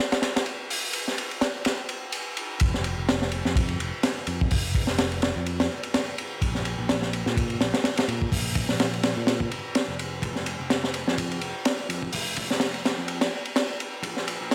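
A crunchy, saturated breakbeat kit with a punchy kick, high-tuned snare, dark cymbals and hi-hat opens this gritty, swaggering breaks excerpt at a swung 126 BPM, and at 2.6 seconds a bright, growly picked electric bass joins beneath it as a filter sweep drives a build-up through to the cut at 14.5 seconds, all set in a small room with light reverb.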